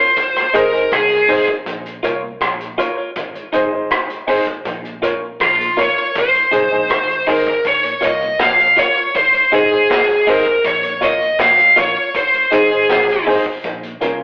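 A straight 80 BPM 4/4 groove from a crunchy, gritty breakbeat drum kit with dub echo drives this serious, laid-back roots reggae excerpt in Bb minor, where a dark, distorted high-gain lead guitar carries the melody up front, a bright, twangy clean electric guitar with dub echo and a mellow tonewheel organ with light overdrive, chorus vibrato and slow rotary speaker sit in the background, a woody upright piano adds short stabs, and a round, amped, foam-muted fingered electric bass sits low under chords alternating between Ab and Bb minor, captured as a rough, telephone-like rehearsal-room recording with moderate stone room reverb.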